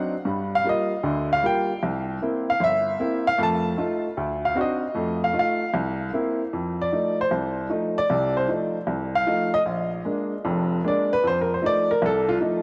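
A lone upright piano carries this relaxed solo jazz fragment, cut from a longer piece, its woody, natural tone sitting up front with a long, lingering sustain. The playing swings its eighth notes in a steady four, spanning from the deep bass register up into the upper treble. The harmony moves through a supple dominant-flavoured progression, passing from Gm7 and C7 to F7, with a darker D7b9 colouring the middle before settling back, then shifting to Bb7 around 9.7 seconds and returning home to F7. The short performance falls into two similar phrases, the second beginning at 6.5 seconds. A lush hall reverb with a long tail surrounds the piano, while the cassette-tape character of this home recording lends a soft, slightly worn glow.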